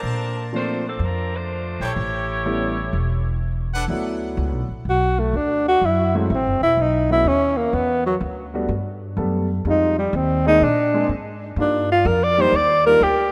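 Big band swing jazz at 125 BPM with an energetic, joyful feel, this excerpt opens with a bright, tight saxophone section carrying the melody over woody pizzicato upright bass and a clear grand piano with long sustain, while a brilliant trumpet section adds brief stabs from 1.8 to 3.8 seconds. At 4.9 seconds a breathy, whispered tenor saxophone takes over with an intimate, mellow solo line, moving through chords from D6 to Ebmaj7. The rough home demo mix sits in a lush hall reverb.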